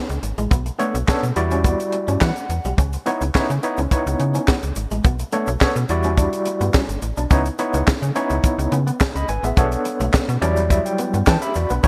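Light reverb and a small room ambience frame this late-night, funky slice of early-eighties boogie funk at 106 BPM in C# minor, cut from a longer piece and cycling through C#m9, Bm9 and Em9 chords. Up front, a tight funk drum kit with a high-tuned snare, tight kick, hi-hat, handclaps and gated reverb sits with a snappy, metallic slap-like FM bass, while a barky, gritty overdriven tine electric piano with fast tremolo through a combo amp carries the accompaniment and adds fills at 1.9 and 10.1 seconds. In the background, a clean, twangy electric guitar riff with lush chorus and a grainy egg shaker complete the groove.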